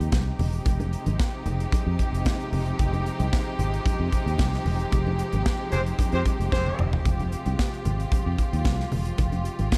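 A straight disco groove is driven by an up-front modern drum kit with a punchy kick and polished snare in an airy small room, while a dark, round, foam-muted fingered bass and very quiet, bright congas played with soft hands fill out the pulse. Over this, a lush bowed string section holds sustained Fm9 chords with close, focused vibrato, giving the clip a sultry, driving mood. Around 4.9 seconds the band hits an accent, with a distant, roomy horn section adding octave-doubled stabs from 5.7 seconds and a drum fill at 6.5 seconds.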